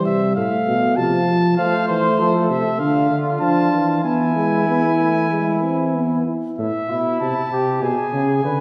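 Heard from further back on a reverberant scoring stage, this fragment of a driving yet contemplative classical brass canzona in A minor moves at 97 BPM in a straight 4/4, with a mellow, up-front trumpet carrying the melody over a roomy, distant bass trombone line, while a euphonium with light vibrato accompanies until 6.6 s and a warm flugelhorn with vibrato enters at 1.6 s as a second line, the harmony passing from F/A through Dmadd9 and E to Am.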